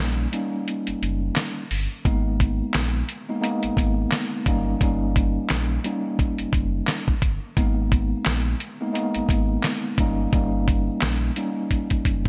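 Dark and reflective, this boom-bap hip-hop cut moves at 87 BPM in 4/4 with a swung 16th feel, in G# harmonic minor with tuning at A4 = 444 Hz. A mellow tine electric piano, clean and filtered at both ends, carries the chords up front over a deep, sustained sine-and-triangle sub bass with octave, while a dusty soul sampler-style drum kit enters at 0.3 seconds with a thumpy kick, fat snare, handclaps and hi-hat, gritty and compressed, closing on a drum fill at 11.7 seconds. The chords cycle between D#7 and G#madd9, and the whole has a bright 1980s-style digital sheen with light reverb.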